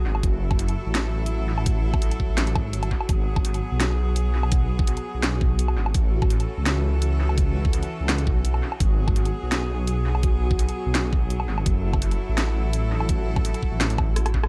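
A dark, detuned sawtooth bass rumbles up front beneath earthy chamber cellos that hold sustained chords with sidechain pumping, while a chorused, pulsing gated texture sits in the background reverb, opening this heavy, tense, half-time drum and bass excerpt at 168 BPM in G# phrygian, where a kit of cracking snare, bright hats, rim click and woodblock trailed by dub echo enters at 0.1 s and an overdriven, knocking electronic kick joins at 0.2 s, all moving through F#m7, G#m7 and A in an echo-soaked digital space before a drum fill at 14.2 s.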